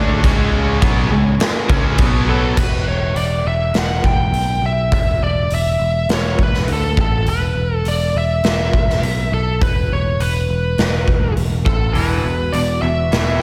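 A driving, aggressive hard rock excerpt at 102 BPM in a straight 4/4, with a punchy, up-front arena drum kit and a growly picked bass pushing through a small room with light reverb. Three rhythm guitars open with riffs: a crunchy overdriven one, a tight distorted one, and a double-tracked high-gain one, all carrying slapback echo, over a very quiet, detuned sawtooth pad. A dark, bluesy distorted lead guitar enters up front with the melody at 2.3 seconds, and at 2.6 seconds all three rhythm guitars and the pad drop out. The pad and the tight guitar return near the end at 11.9 seconds, joined by the crunchy guitar at 12.0 seconds.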